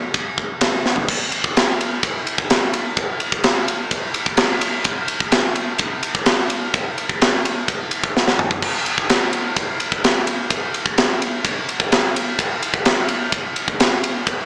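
A tight, polished acoustic metal drum kit opens this heavy, dark fragment of a longer piece in straight 4/4, its firm, tight kick, medium-tuned snare, toms and bright crash and ride cymbals sitting up front in an airy big room, with a lush hall reverb and a small-speaker tone, and drum fills arriving at 0.9 seconds and again around 8.2 seconds.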